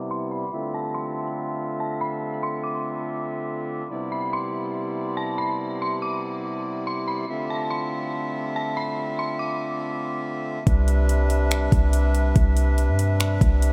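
Dreamy and floating, this atmospheric cloud-rap excerpt in a half-time feel opens with a reedy, boxy accordion holding sustained chords that pump against a sidechain, while a dark, detuned synth bell with an eerie, inharmonic FM tone traces a high melody through chorus, tremolo and analog delay until 10.6 seconds. At 10.7 seconds a deep, boomy 808-style bass and a smooth R&B drum kit arrive up front, with a knocking kick, metallic hi-hats and finger snaps. A filter sweep runs through the opening 10.7 seconds as the harmony drifts between Cmaj7 and Dm7, and the whole mix is soaked in a huge, ambient reverb.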